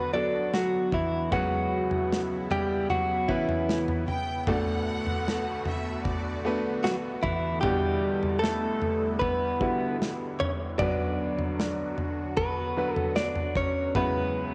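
Heartbroken and melancholic, this pop ballad in B minor moves at 76 BPM, with a clean, picked electric guitar carrying the melody up front, recorded direct with compression and a touch of spring reverb. A woody, vintage-toned upright piano plays accompaniment beneath it, while a lush, detuned synth pad with chorus and phaser holds sustained chords in the background, and a dark, tight acoustic drum kit with a rolled-off top sits close in a small room. A focused, bowed violin section adds a brief vibrato second line from 4.1 to 6.6 seconds, and the whole cut carries the soft grain of a home cassette recording with light room ambience.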